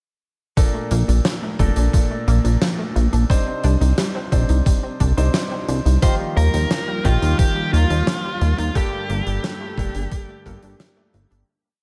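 A chorused synth bass sits up front with a glossy, pulse-wave tone, driving a galloping sixteenth-note line under this short, nostalgic and nocturnal synthwave piece. Beside it, a thumpy, sampler-style electronic kick and a big-room arena kit with a fat snare and closed hi-hat keep an 80s machine backbeat in a straight four. A clear concert grand piano adds held chords with syncopated pushes through a delay, while a round, detuned analog pluck repeats an eight-step arpeggiated sequence in the background with chorus and delay. At 6.0 seconds a dark, overdriven electric lead guitar brings in a motif-based melody through tape echo, and an airy supersaw pad enters with sidechain pumping beneath it. The chords move from Bbmaj7 through Cmadd9 and Ebadd9 to Gmadd9, and studio reverb gives the mix a spacious sheen as the piece fades out from 7.8 seconds.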